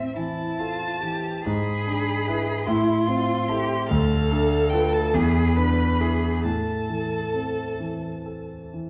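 In a rubato 6/8 at 42-50 BPM, this brief fragment of a slow, yearning and solemn romantic piano trio movement in A minor sets a focused, richly vibrato-laden bowed violin melody high above a distant, expressive cello second line with portamento, both resting on a mellow, up-front concert grand accompaniment with deep bass, all bathed in a wet recital hall reverb as the harmony moves from Am through E7/G# and Bdim/D to E7 and home to Am at 6.5 seconds.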